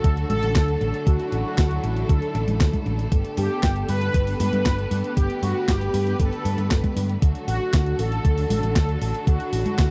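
Sunny and playful, this short cut from a longer italo disco piece moves at 117 BPM in a straight 4/4, centred on G major. A mellow synth brass carries the melody in a narrow upper-middle range, its detuned sawtooth tone brassy and round, with vibrato, a filter sweep, chorus and tape echo. Beneath it, a studio string section holds sustained bowed chords with a focused, smooth-topped ensemble sound, while a hollow-body short-scale picked electric bass sits dark and punchy up front. The beat comes from a thumpy electronic kick, the most prominent part in the mix, and a clean 12-bit drum machine supplying congas, handclaps, hi-hat and a medium-tuned snare, both overdriven and re-recorded in a small room for a sampler-style grit. The harmony moves from D to Gadd9 at 3.1 seconds and back to D at 7.2 seconds. The whole has a dry, close 1970s-style studio sound with light reverb.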